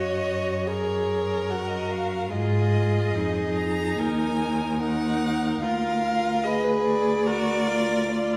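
Heard from further back in a wet recital hall, this solemn, melancholic 8.4-second fragment of a slow romantic movement for string quartet moves at 73 BPM with a rubato feel through Gb, Ab5, Ebm and Bb7/D, as a warm first violin sings the expressive melody with vibrato, portamento and a soft attack over a smooth, even second violin line, while a focused viola accompanies and a rich cello, up front, carries the bass.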